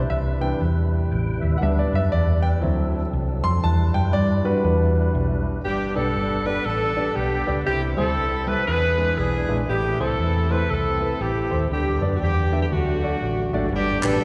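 Drenched in a long church reverb, this soulful, hopeful swung gospel cut opens with a clear, intimate grand piano in the spotlight, its action noise audible, over a round, punchy hollow-body electric bass up front and a fat, lightly overdriven tonewheel organ holding chords in the background through a slow rotary speaker with chorus vibrato and key click, adding a brief fill near 0.9 seconds. Around 5.6 seconds a bright alto saxophone with vibrato carries the melody alongside a present, punchy horn section, while a very quiet, mellow French horn section sustains chords beneath. A close, dry group handclap lands at 14.0 seconds as the clip breaks off.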